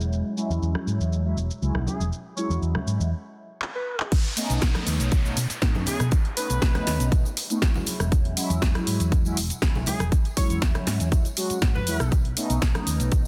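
A dense, heavily limited and nearly dry mix opens this joyful, funky filtered disco house excerpt at 120 BPM in E major, where mellow detuned synth brass with chorus, phaser and cassette-tape colour pumps under a low-pass filter alongside a dark, round hollow-body fingered bass and a tape-toned analog drum machine of snare, handclaps, hi-hat, rim click, cabasa and crash, with very quiet ringing tambourine and congas close behind. A tight horn section with vibrato and digital delay carries the melody from 1.9 s, and after a filter sweep, a short break and a drum fill, the drop lands at 4.1 s with a punchy, up-front layered electronic kick and a downlifter. The chords move between E69 and B9.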